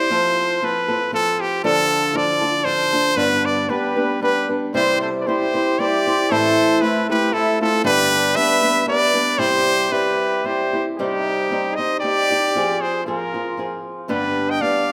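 Mexican folk in the mariachi tradition, this dramatic, passionate passage moves in a rubato 3/4 at around 116 BPM, cut from a longer piece and set in a moderate recital hall reverb. A bright trumpet with light vibrato carries the classical-style melody up front over a warm, fingerpicked flamenco guitar, and a mellow second trumpet joins at 3.7 seconds with its own line. At 11.0 seconds the harmony darkens from C major to C minor, moving through Cm and Fm toward G.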